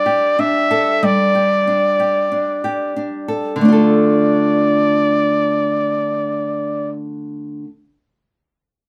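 Tender and reflective, this short pop fragment in D minor moves at 94 BPM in a straight 4/4, with a breathy, whispered trumpet singing an intimate, close-miked melody between D5 and E5, its soft attack and vibrato placed up front. A bright, fingerpicked nylon-string guitar with fresh strings accompanies from D3 to A4, shifting from Gsus2 to Dm at 3.6 seconds. The pair sound like a band playing live in one small room with moderate ambience, the trumpet dropping out at 6.9 seconds and the guitar ringing on until 7.7 seconds.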